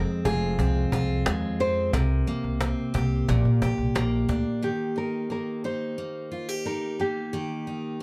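Heartfelt and easy-going, this short acoustic pop passage in a straight 4/4 is cut from a longer piece. A bright, full-bodied picked steel-string guitar sits up front with the accompaniment from the very start and carries on to the end at 8.0 seconds. A warm, fingerpicked nylon-string guitar in classical style takes the melody in a high, narrow range just after it. An upright bass plucked on gut strings adds a thumpy, woody low end, and a cajon with faint snares brings a small-room feel, both dropping out at 4.4 seconds so the two guitars carry the closing stretch together. The harmony moves from Fm through C5 and Bb6 before settling on Eb as the second section begins, all framed by a dark production with light reverb.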